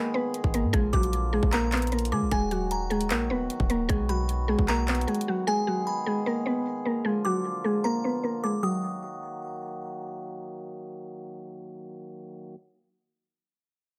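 Hip hop in a trap style, this melancholic yet hard-hitting passage is cut from a longer piece, moving at 152 BPM in a half-time 4/4 feel in Eb harmonic minor, tuned slightly sharp to A4 = 441 Hz. Up front, a woody, round mallet-like synth pluck carries the melody through a chorus and low-pass filter, while a delicate, tinkling synth tine bell traces a bright second line high above, its chorus and digital delay adding shimmer. Beneath them, a reedy, mellow accordion holds sustained chords through a low-pass filter and lingers on alone until 12.6 seconds. A produced trap kit of hard-clipped kick, bright hi-hats and handclaps drives the track from 0.3 to 5.3 seconds alongside a deep, boomy 808-style bass with a noisy edge. The harmony cycles through Abm, Bb, Ebm and B, a filter sweep colors the middle stretch, and a light reverb rounds out the mix.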